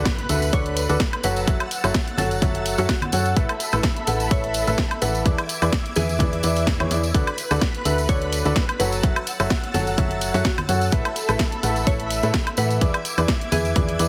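A bright, woody upright piano riff sits up front with audible action noise, pumping against the sidechain over a punchy, round FM bass and a silky, string-like analog pad with ensemble chorus. This joyful, feel-good piano house excerpt runs at 127 BPM in 4/4 with a light 16th-note swing in A major, cycling through D6, F#m7, Asus2 and E7. A tape-warm electronic kick and a house kit of hi-hat, cracking snare and woodblock drive it alongside ringing acoustic tambourine and congas, while a very quiet impact opens the first 1.5 seconds and a glassy, crystalline wavetable pluck with chorus and digital delay enters in the background at 0.5 seconds, all under a heavily compressed, radio-style sheen with light reverb.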